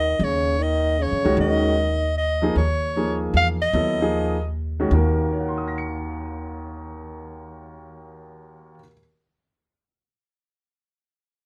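Close, detailed microphones and a light reverb give this short jazz fragment a present, close-up sound. It moves at 153 BPM in a swung 3/4 in Eb dorian, with a cool, spiritual mood over Eb7sus4, Eb9sus4 and Ebm harmonies. A soprano saxophone carries the melody up front with a soft-attacked subtone, light vibrato, scooped notes and a smooth top, while a punchy, vintage-toned trombone adds a second line until 2.1 s. Underneath, a woody, growly pizzicato upright bass gives a thumpy foundation until 8.7 s. The clear baby grand piano enters at 1.2 s with intimate accompaniment, its long sustain and audible action noise heard close at hand.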